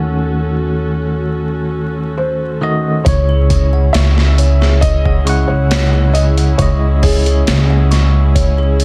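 A woody, dark upright bass with gut strings sits up front, played pizzicato and anchoring this smoky, cinematic trip hop excerpt alongside a bright, bell-like tine electric piano with tremolo and tape echo and an intimate, sul tasto chamber string section holding sustained chords. A soft, mellow felt-muted upright piano carries the melody from 2.2 seconds, and at 3.1 seconds a gritty, pitched-down boom bap drum kit with a thumpy kick and high-tuned snare arrives together with a delicate, tinkling music box playing airy arpeggios through digital delay. A filter sweep shapes the opening, and the dense, heavily limited master carries vinyl crackle and small-room ambience.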